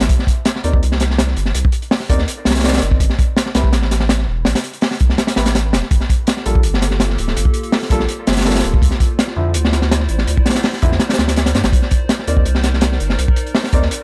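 A dry, gritty hardware recording with a studio reverb frames this short drum and bass cut, a jungle piece in G minor at 165 BPM that feels both nostalgic and frenetic. A crunchy breakbeat drum kit sits up front for the full 14 seconds, its small-room acoustic sound dark and rolled-off on top, with a punchy kick and a high-tuned snare among the hi-hats. Beneath it, a saturated sub bass runs deep and thick, its triangle-like tone hitting with a fast attack and holding sustained notes. A dark, mellow grand piano plays stabs trailed by dub echo, moving through chords such as Cm9, Am, Gm9 and Dm9. At 6.4 seconds a warbly, tape-like pad enters in the background with sustained chords, its detuned, lo-fi voice colored by chorus, built-in reverb and vintage 12-bit sampler grit.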